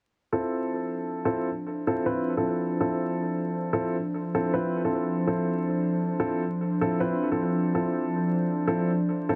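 Swung sixteenths at 97 BPM in 4/4 give this glitch hop excerpt a funky, gritty lean, built around a D minor seventh. A grand piano with audible action noise plays intimate stabs from 0.3 s, filtered and echoed by a digital delay, while a warbling, nostalgic tape-like pad enters at 0.8 s with mellow, detuned sustained chords treated with chorus, phaser and its own reverb. A small, wet room and vinyl crackle frame the dense, heavily limited master.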